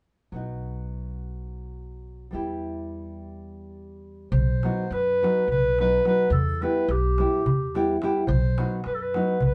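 In a straight 7/8 at 212 BPM counted in eighths, this restless, virtuosic Balkan wedding-band excerpt opens at 0.3 seconds with a full-bodied, thumb-plucked nylon-string guitar and woody pizzicato upright bass, moving between B and Em. At 4.3 seconds a mellow, classical-style clarinet steps up front with the solo melody, joined by a darbuka of clay shell and natural skin, and both play through to 9.5 seconds. The band plays live in one wet small room, and the sound carries a soft, rounded top end.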